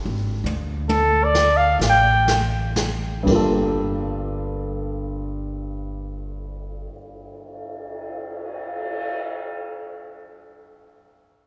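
The warm flugelhorn stands out, singing a brief, vintage-toned phrase with vibrato from 0.9 to 2.5 s, up front over a wistful, intimate jazz ballad in G minor. The opening, a flugelhorn solo passage with a brushed drum fill, is slowing down over a tempo between 39 and 48 BPM in a swung 4/4, resting on a Gm9 chord. A dark, mellow grand piano carries the accompaniment from the start until 11.5 s, its short sustain sitting close to the listener. A woody, thumpy upright bass with gut strings plays pizzicato in its low register until 6.9 s, while a jazz kit played with brushes adds dark cymbals, hi-hat, toms and a boomy kick until 9.1 s. The whole fragment, cut from a longer piece, sits in a wet church reverb that gives the small group a spacious, hall-like glow.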